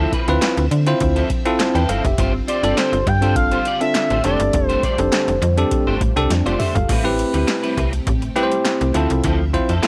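A bell-like tine electric piano, a slap-like FM bass with a snappy metallic attack, a twangy, slightly broken-up electric guitar riff and a swirling, phased string machine in the background open this danceable, slick slice of early-eighties boogie funk, joined almost at once by an up-front analog drum machine with a deep kick, punchy snare, handclaps and metallic hats. From 2.5 to 5.7 seconds a smooth, mellow synth lead with vibrato carries the melody over lush ninth and suspended chords, and a drum fill at 6.3 seconds leads into a new section. The sound is dry and close, with the tape-warm grain of a home cassette recording.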